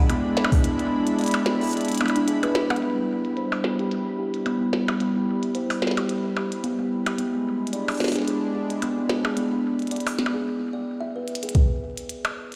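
Glitchy and playful, this IDM fragment with a gentle swing sets a woody, ringing kalimba playing filtered arpeggios with tape echo over a detuned sawtooth analog pad holding chorused chords from E7 to a rootless Cmaj7, while a clicky, overdriven glitch kit of tiny snare, hats and percussion blips ticks along, a soft, tape-warm electronic kick thumps only at 0.5 and 11.6 seconds, a filter sweep on the kalimba runs from 2.8 seconds, and the whole sounds as if played through a big system in a bare stone room.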